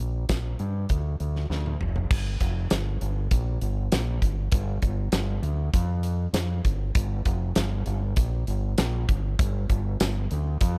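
In a straight 4/4 classic rock groove cut from a longer piece, a growling, round, overdriven fingered electric bass sits up front in a brooding, gritty mood. At 0.3 seconds a huge, up-front arena drum kit joins it with a punchy kick, fat snare, bright crash and hi-hat, tambourine and toms, playing a fill from 1.5 to 2.1 seconds into the next section, all captured in a dry, close 1970s-style studio sound.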